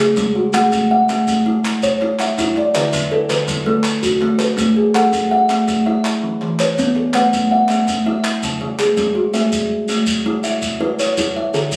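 A ringing, hollow-box kalimba sits up front with woody thumb-plucked arpeggios, alongside a second, shorter solid-board kalimba that stops at 9.7 seconds in this warm, hypnotic southern African traditional mbira-style cycle at 109 BPM in 12/8 and A major, joined by close, dry group handclaps until 9.1 seconds and a grainy, distant shekere, all heard through light reverb and recorded on a phone in the room.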